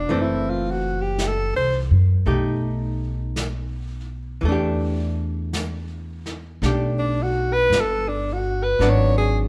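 A clear, close-miked alto saxophone leads this slow, intimate jazz ballad excerpt, singing a melancholic melody with vibrato between D4 and C#5 over a swung 55 BPM pulse in E minor. Up front beside it, a woody pizzicato upright bass on steel strings anchors the low end from F#1 to F#2. A dark, clean hollow-body archtop guitar, picked and amplified, supplies the harmony, with the chords moving through F#m7b5, B7b13 and Em7 before touching G#m7b5 at 8.8 seconds. Brushes on a medium-tuned snare and hi-hat come in at 0.1 seconds, sitting low in the mix with a rolled-off top and a small-room character. The band plays live together in one room, held in a moderate large-studio reverb that gives the saxophone's solo a gentle, lingering bloom across its roughly nine seconds.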